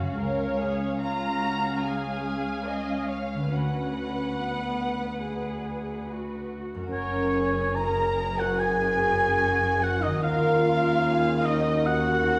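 A soft, reverberant hall sound surrounds this tender, moving fragment of a cinematic film score for orchestra, unfolding in F# major at 72 BPM in 4/4 with a free, rubato feel. From the opening, muted violin sections carry a veiled melody and a second line above con sordino violas, while muted cellos hold a low bass and a ringing, fingerpicked concert harp spins arpeggios in the background. The strings sound hushed and lush, with soft attacks and gentle vibrato, and the harmony moves from C# to Bmadd9/D. At 6.9 s the music settles on F# as a clear, close-miked oboe enters up front with a second line, a dark, distant French horn section sustains chords, and a muted double bass section deepens the bass from behind. The passage closes on D#m7, the oboe's clear solo voice glowing above the shadowed strings and roomy brass.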